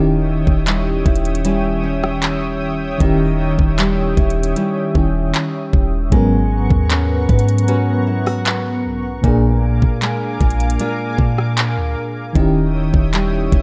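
A trap drum kit enters at 0.5 s with a knocking kick, crisp hats, handclaps and rim clicks, sitting up front in a straight 4/4 at a slow 77 BPM. Beneath it, a clean 808-style bass gives a deep, boomy sine tone with a fast attack that decays, anchoring this sensual, moody contemporary R&B excerpt. An FM electric piano with tremolo carries the accompaniment, full-bodied and shaded with a noise layer. A fingerpicked nylon-string guitar spins classical-style arpeggios through tape echo, with audible finger squeak. A lush, detuned sawtooth unison pad holds sustained chords with a slow attack, thickened by chorus and tremolo, as the harmony moves from D#7b9 to G#m11 at 6.1 s, then A#7, and back to D#7b9 at 12.4 s, all in a dark, dry, warm production.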